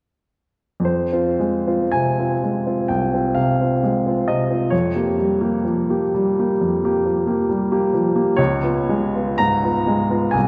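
A clear baby grand piano enters at 0.8 s and carries this brief, brooding romantic character piece alone until it breaks off at 10.5 s, cut from a longer work. The mood is passionate, with a slow, rubato feel in four that lets the phrasing breathe and stretch. The harmony starts on a dark minor chord, turns more unsettled on a half-diminished sound at 4.7 s, and reaches a tense dominant-seventh colour near the end. The piano spans from deep bass notes up into its upper-middle register, and its tone is polished and up front. A long, wet church reverb surrounds it, giving the lingering resonance of a large hall, and the instrument is tuned slightly below standard pitch, to A4 = 437 Hz.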